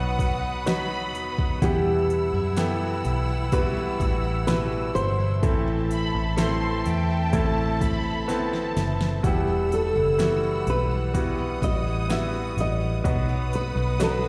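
Emotional and heartbroken, this slow pop ballad moves at 63 BPM in 4/4 with a straight feel, set in E harmonic minor and drifting from B through Emadd9 and Amadd9 before returning to B. A dark, fingerpicked nylon-string guitar carries the melody, bathed in plate reverb and slapback echo, while a smooth, even violin section adds a lush second line above it until 9.0 seconds, its bowed tone given an extra digital delay. A polished concert grand piano with deep bass and short sustain supplies the accompaniment, and a clear, intense string section holds sustained chords underneath, both sharing the plate reverb. A very quiet, full-bodied dreadnought steel-string guitar picks arpeggios low in the mix, and a round, foam-muted electric bass sits up front with an amped, vintage darkness. An electronic, produced drum kit with a soft kick, fat snare and smooth hats enters at 0.2 seconds and plays a fill from 8.3 to 9.2 seconds, all heard as a live gig through the venue's PA with recital hall reverb in this piece cut from a longer work.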